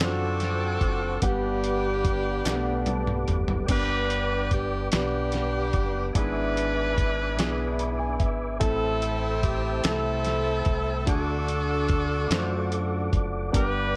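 A clear, punchy saxophone section carries the melody up front with slapback echo in this jubilant, soulful slow gospel fragment in 6/8, supported by a natural-sounding concert grand piano that adds fills at 2.5 and 7.4 seconds, a soft, flute-like tonewheel organ holding chords in the background through a slow rotary speaker and chorus vibrato, a deep, round fingered electric bass, and a gritty, compressed sampler-style drum kit with thumpy kick and fat snare that plays a fill at 2.5 seconds beside a brief, very quiet group handclap, the whole mix sitting in digital ambience with a dark, warm production.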